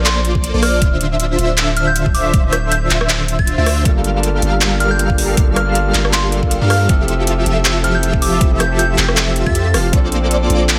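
A fat, detuned sawtooth polysynth plays a bold riff through analog chorus and a cassette-tape haze that pumps against the sidechain across this bright, lush future bass excerpt in F major at 158 BPM, felt in half-time with a light swing on the sixteenths. Beneath it, a deep, sine-toned 808-style bass holds long decaying notes up front, while a knocking, tape-warm electronic kick and a layered dubstep kit of handclaps, rim clicks and metallic hats drive the groove. High above, a pure FM synth bell carries the melody with a gentle, mellow glow, chorus and tape echo, and an airy, dreamy unison lead with a noise layer sits in the background, spinning arpeggios. At 3.8 s a barky, gritty tine electric piano enters through a combo amp, its fast tremolo and tape echo adding accompaniment. The chords move from Bbmaj7 through Dm7, Gm7 and Fmaj7 before returning to Bbmaj7, all set in light reverb.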